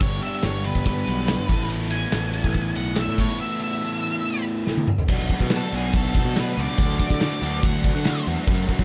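An octave-fuzz lead guitar carries the melody of this carefree, wistful indie rock excerpt, its dark, distorted tone trailed by analog delay as it solos through the opening until 5.1 seconds and then stops at 8.2 seconds. At 142 BPM in a straight 4/4, the harmony moves from G to Asus2 before shifting to Bm7 and D in the second passage. A bright, overdriven electric guitar and a raw garage guitar, sitting further back with overdrive and analog chorus, both play picked riffs beneath the lead. A fuzz-laden picked electric bass adds a punchy, overdriven low end. The loose indie drum kit sits up front in a small, pumping room, with a medium-tuned snare, kick, toms, ride and crash, and a drum fill at 4.7 seconds leads into the new chords. Very quiet, crisp group handclaps from a live room add a faint human touch, all wrapped in studio ambience.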